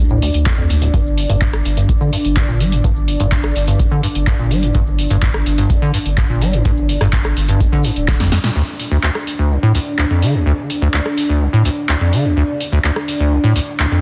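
This hypnotic, gritty acid house cut at 126 BPM opens on a squelchy, resonant square-wave acid bass riff under a filter sweep, with tube saturation, lush chorus, 12-bit sampler grit and digital delay, while a moody, detuned sawtooth pad holds dark sustained chords over Dm and G5, both pumping with the sidechain. A thick sine sub bass, a deep, tape-warm electronic kick, a grainy cabasa in the background and an analog drum machine with a punchy snare, handclaps, rim click and metallic hats drive the groove into a drum fill from 8.1 seconds, with a band accent at 8.4 seconds. The kick, sub and cabasa fall away by 8.5 seconds, leaving the acid bass, pad and drum machine in a dry, dense, heavily limited mix.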